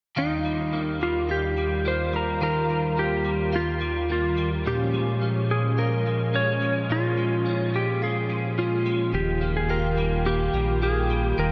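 In a straight 4/4, this blissful, ethereal dream pop fragment drifts between Ebadd9 and Bbm7 chords, soaked in a huge ambient reverb. A dark, slide-played lap steel carries the melody through tape echo over a smooth, detuned sawtooth analog pad with chorus and picked electric guitar arpeggios shimmering with ensemble chorus and echo. At 9.1 seconds a deep sine sub bass with an added octave enters up front, giving the closing seconds a fuller foundation.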